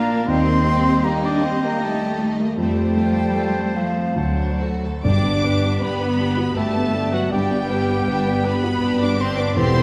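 Tender and uplifting, this rubato cinematic orchestral passage in 3/4 sets a focused, distant violin section on the melody above a dark cor anglais, an airy silver flute that plays until 5.0 s, a lush second violin section and a close-miked clarinet, while a felt-muted upright piano, smooth violas and very quiet mellow French horns fill the harmony over expressive cellos and woody double basses, with round, soft-mallet timpani entering at 5.0 s inside a wet scoring-stage reverb.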